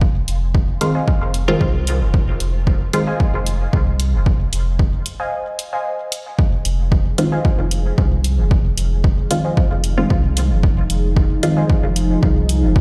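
Dub techno with a meditative, cavernous mood, cut from a longer piece and heard through a big sound system in a bare stone room. A pure sine sub bass, deep, smooth and up front, pumps under a punchy, tape-warm electronic kick that runs throughout, while dark, layered hi-hats sit low in the mix. Muted, full-bodied chord stabs with phaser and dub echo appear from 0.8 to 3.1 seconds and return at 7.2 seconds, and a warbling, lo-fi pluck with chorus and dub echo carries a mellow riff above them. A break arrives at 5.3 seconds, and from 7.1 seconds a moody, evolving analog pad with a slow attack and long release adds sustained chords over a lingering Fm7 colour. Sidechain pumping breathes through the bass, stabs, pluck and pad.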